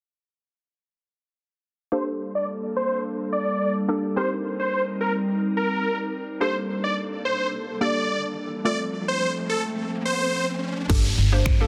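Energetic and confident, this dance-pop excerpt in G minor moves at 107 BPM in a straight 4/4, opening at 1.9 seconds with huge, lush supersaw chords carrying the melody alongside a hollow, nasal square pluck, joined at 2.2 seconds by a glassy, ethereal FM pad, all breathing with sidechain pumping under a filter sweep through Gmadd9, Cm7 and F. A riser builds from 8.2 seconds, and at 10.9 seconds a woody, thumpy pizzicato upright bass and a house drum kit with a punchy kick, crash, finger snaps and a soft-clipped snare arrive on the return to Gmadd9. The mix sits in a moderate plate reverb with a dense, heavily limited modern master.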